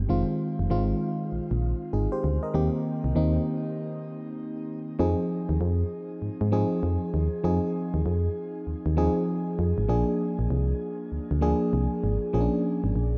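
Swung sixteenths in a steady four give this new jack swing R&B cut its bounce, and the mood is confident and punchy. A solid FM bass sits up front from start to finish, its round, digital tone striking quickly and then decaying, dark and low in pitch. An FM electric piano carries the accompaniment across the same span, mellow and up front, with a noise layer in its sound and a shimmer reverb around it. The harmony moves from Fm7 to Eb6, then a brief break at 3.8 seconds leads into a new section at 5.0 seconds, where the harmony returns to Fm7 before turning to Bb7 at 9.9 seconds. A moderate plate reverb and a dark, warm production shape the sound of the piece, and it is cut from a longer piece.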